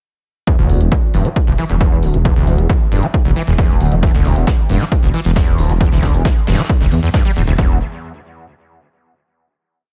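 A straight 4/4 pulse at 135 BPM drives this short, industrial peak-time techno piece, where a punchy, up-front four-on-the-floor electronic kick and smooth programmed hi-hats anchor a rolling staccato groove from a deep, rumbling detuned saw bass with tube saturation and sidechain pumping, while a squelchy, gritty overdriven acid bass plays a 16-step line with accents and slides through distortion, chorus and delay over a Dsus24 chord; an airy, polished acoustic drum kit of hi-hat, snare and tambourine joins at 4.0 seconds with a looped, edited breakbeat, all in an echo-heavy small room before the closing final-chord section arrives at 7.6 seconds.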